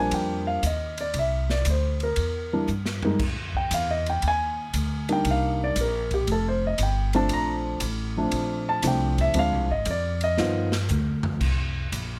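A jazz piano trio swings in C minor at 117 BPM, moody and cool, in a short cut from a longer piece. A dark, mellow baby grand carries the melody up front from the start, its intimate tone marked by audible action noise, and its solo runs until 11.4 seconds. The pizzicato upright bass, woody and thumpy on gut strings, sits close beside it and carries on a little past the piano to 12.2 seconds. The drum kit sits lower in the mix, with dark cymbals, a medium-tuned snare and a punchy kick in an airy hall sound, adding fills at 2.7 and 10.4 seconds. The harmony moves from Ebmaj9 through Fm9, Cm9 and Bbmaj9 to a Dm7b5 and G7b13 turnaround, captured with close, detailed microphones and little reverb.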